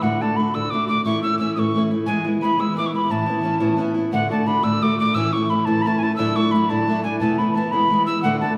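A wooden whistle and a fingerpicked steel-string acoustic guitar open together on this rollicking, lively Celtic jig in A major, moving at 117 BPM in 6/8 through a short, repeated phrase cut from a longer piece. The whistle carries the high melody with an airy chiff, a soft attack and an unsteady vibrato, while the guitar supplies a warm fingerpicked accompaniment over chords such as D, A, E and Aadd9, closing the phrase on Esus4 resolving to E at 7.7 seconds. Both instruments sit up front in a wet, lingering church-like hall reverb that gives the recording a spacious concert feel.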